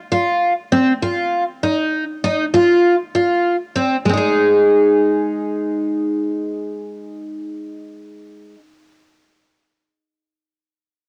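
Progressive instrumental in 5/8 at 198 BPM in Ab major, this intricate, driving short excerpt features a solo picked twelve-string acoustic guitar, shimmering and octave-doubled with audible finger squeak, sitting up front from 0.1 to 8.6 seconds with a cassette tape tint and moderate spring reverb in a home recording, moving through Csus4 and Ebsus2 before settling on Ab5 at 4.0 seconds.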